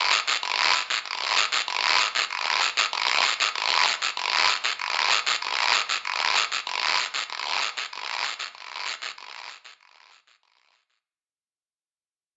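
Latin percussion at a brisk 192 BPM in a straight 4/4, with a danceable, joyful feel carried entirely by a solo guiro that sits close and up front with a raspy, acoustic bite. It plays from 0.1 seconds onward as the passage moves from its opening section into a second one at 6.0 seconds, where a fade-out carries it to the end of this cut from a longer piece. The production is dark and warm, rolled off above 7.7 kHz, and the guiro sits in a moderate studio reverb.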